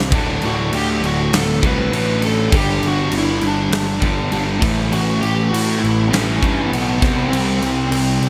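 Hard rock with a powerful, swaggering strut, this short cut from a longer piece moves at a steady mid pace in a straight four. A growly, fuzz-drenched picked bass opens at 0.0 seconds, and a cranked, double-tracked stack guitar joins almost at once with a bright, up-front overdriven riff. A huge, up-front arena drum kit drives the groove, its punchy kick, medium-tuned snare and bright crash cymbals carrying a gated reverb with a hall-like sheen. From 0.2 seconds a smooth overdriven lead guitar, rounded in tone and picked, sings a melody through a trail of delay. The chords move from D5 to G5, then A, then C5, all wrapped in a bright 1980s-style digital production with a light touch of small-room ambience.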